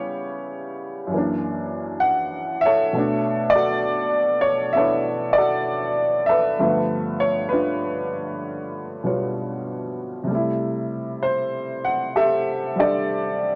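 Playful and relaxed, this short solo jazz piece drifts along at 65 BPM in 4/4, its swung eighths stretched by a loose, rubato feel. A lone upright piano carries the whole 13.6 seconds, ranging from F#2 up to F#5 and sitting up front in a light reverb. Its tone is warm, woody and vintage, slightly detuned, smooth and with a long sustain that lets each chord ring. The harmony moves from C#m7b5 through F#7b13 and Bm9 before settling on G13 at 6.6 seconds and resolving to C6 at 10.3 seconds. The tuning sits a touch high at A4 = 443 Hz, adding to the instrument's old-fashioned charm in this fragment cut from a longer piece.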